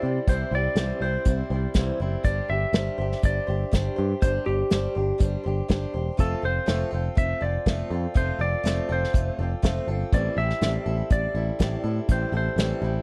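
Open-road and nostalgic, this 13-second excerpt of folk rock and heartland rock moves at 122 BPM in a straight 4/4, with a clean, twangy lap steel guitar carrying the slide melody through tape echo over a bright, boxy picked swing-style acoustic guitar with audible finger squeak, a warm, direct picked electric bass sitting up front, and an unplugged drum kit played with bundle sticks (punchy kick, medium-tuned snare and hi-hat) from 0.3 to 12.7 seconds, all captured in a dry, close 1970s-style studio sound as the chords move from C through Gsus4 and F to Am7.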